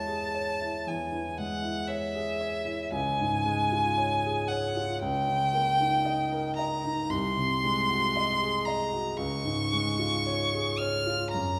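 Lyrical and tender, this short romantic classical passage, cut from a longer piece, moves at a slow, rubato 57 BPM in 4/4 and D-flat major. Up front, a single bowed violin sings the melody high in its range with a rich, smooth, even tone and vibrato, while a warm concert grand piano accompanies with deep bass, an open sound and long sustain. A recital hall reverb bathes the duo as the harmony passes through C#m/E, Db, Eb7/Db and Ab7/C before settling on Db at 9.2 seconds.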